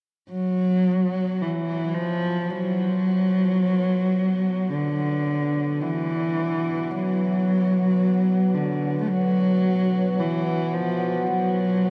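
A dark, woody bowed cello sings an up-front melody with vibrato and tape echo over a detuned analog pad that fades in on sustained B5 chords with subtle chorus, in this unsettling, desolate ambient excerpt in B minor at 55 BPM, all steeped in a huge 8.1-second reverb and the warbling pitch drift of worn cassette tape.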